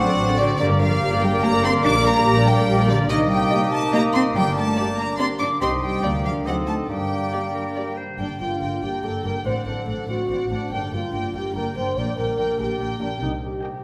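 In a straight 3/4 at 143 BPM, this playful, whimsical G minor film cue, cut from a longer piece, feels magical and sneaky as a dark, woody, lush violin section carries the melody beneath a pure, floating upper violin line, with a bright vintage clarinet, a mellow silver flute and a warm cor anglais in the background and a soft-attack bassoon joining them until about 8 seconds, while sul tasto violas, intimate, close cellos, floating double basses, a smooth-topped French horn section holding chords and ringing thumb-plucked harp arpeggios all sit in a wet scoring-stage reverb.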